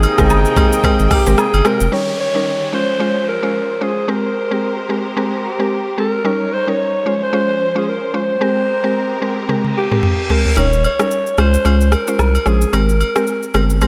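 Afrobeats at 111 BPM in Ab major with a swung 16th-note feel, this romantic, joyful cut is led by a breathy, raspy alto saxophone melody with analog delay, over a mallet-like woody FM synth pluck with chorus, lush bowed strings with portamento that hold chords until 10.6 seconds, a brief mellow horn section, and a deep saturated sub bass, electronic drums with knocking kick and smooth hats, and agogo bells and woodblock that open the track, drop out while a downlifter and reverse cymbal sweep through a dreamy, reverb-soaked middle over Eb7, Dbmaj7 and Abmaj9, and return around a drum fill at 9.5 seconds, with the kick muted from 10.6 seconds.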